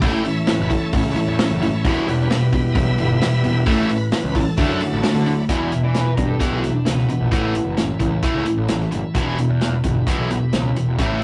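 A shouting, lightly overdriven tonewheel organ leads this brooding, swaggering classic rock excerpt, taking the solo spotlight for the first 5.5 seconds with sustained chords full of key click and the slow churn of a rotary speaker. Underneath, an up-front cranked stack guitar and a very quiet crunchy second guitar play a picked, overdriven riff in E dorian at 131 BPM in a straight 4/4, moving through A, Em and Dadd9. A growly, fuzzed electric bass drives the low end, while a vintage acoustic kit of hi-hat, medium-tuned snare and tight kick sits mid-forward with a rolled-off top. At 5.5 seconds the music settles onto Em and A, and a raw garage guitar adds a brief picked second line that ends at 7.8 seconds. The whole take has the rough, tube-saturated feel of a rehearsal room, with a moderate small-room reverb, and it is cut from a longer piece.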